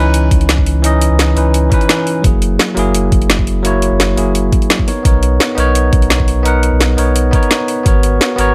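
Liquid drum and bass in C# dorian at 171 BPM with a lush, soulful mood, this short section drifts through C#m9, F#9, Bmaj9 and G#m11 on a bell-like tine electric piano, upfront and clean with tape echo, over a deep, round sine sub bass. An overdriven kit with a woody snare and bright hi-hats sits forward with a light swing on the 16ths, joined from 0.3 seconds by a knocking, overdriven electronic kick, all in a light reverb.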